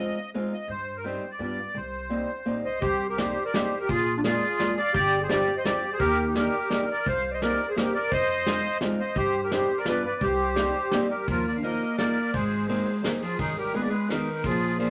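Nostalgic and whirling, this musette waltz is led by a reedy, sweet accordion with light tremolo tuning, close-miked, dry and up front, over a bright, boxy fingerpicked archtop guitar with audible finger squeak and a woody pizzicato upright bass. A soft-attacked clarinet with a smooth top enters at 2.6 seconds as a classical-style second line in the background, and a vintage brush kit with dark cymbals, a tight kick, a medium-tuned snare and a rolled-off top joins at 2.8 seconds. The harmony moves through changes such as Fm7, G7 and Cm7 before shifting to Ebsus2 and Abadd9, set in a wet studio reverb in this cut from a longer piece.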